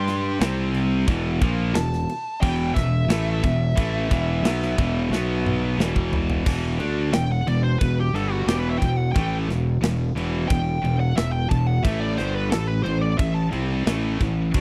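A dry, close 1970s-style studio sound frames this aggressive, relentless heavy metal excerpt in E minor at 89 BPM, where a growly, punchy, fuzz-overdriven fingered bass and a tight drum kit with bright cymbals sit up front beneath two picked, high-gain rhythm guitars, one scooped and one tucked in the background, while a lead guitar with slapback echo carries the melody and, after a drum fill from 5.1 seconds, takes a solo from 6.5 seconds until it stops at 13.5 seconds.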